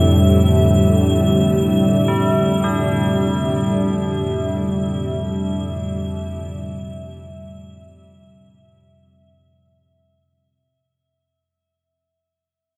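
Dark ambient drone in free time, tuned to A4 = 435 Hz and resting on A minor, this unsettling, cavernous fragment of a longer piece sets an up-front, detuned sawtooth pad sweeping with resonant filter swells over a mellow, chorused analog drone and a crystalline, icy glass pad high above, while solemn, metallic tubular bells enter at 2.1 s with ringing arpeggios through delay and shimmer, all sinking into a huge, wet reverb as the sound fades out from 0.0 s to 10.5 s.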